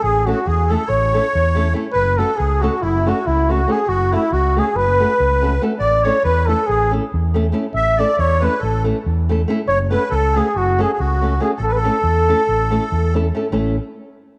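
Balkan folk in a brisk 9/8 at 280 BPM, this short excerpt from a longer piece carries a bittersweet, virtuosic mood in A major, moving between A and F#m. A mellow flugelhorn with a smooth top leads the melody up front in a classical style, joined by a reedy, shimmering musette accordion on a darker second line, while a dark fingerpicked flamenco guitar accompanies from 0.3 seconds. Underneath, an overdriven fingered electric bass sits punchy and amped at the front, all placed in a moderate echo chamber reverb with small room ambience.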